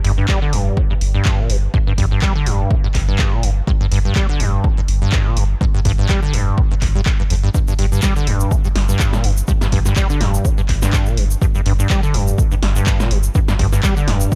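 Acid house at 124 BPM in G minor, gritty and trippy, with a light 16th-note swing, cut from a longer piece and captured as a dry hardware recording with digital ambience. A squelchy, resonant sawtooth acid bass riff with a filter sweep, tube saturation and analog chorus sits up front over a round, deep triangle-and-sine bass with sidechain pumping. Tape-warm drum machine handclaps, hi-hat and snare, re-recorded in a small room, play from the start, and a punchy electronic kick enters at 0.3 seconds. A grainy, bright egg shaker joins at 7.5 seconds, close and dry.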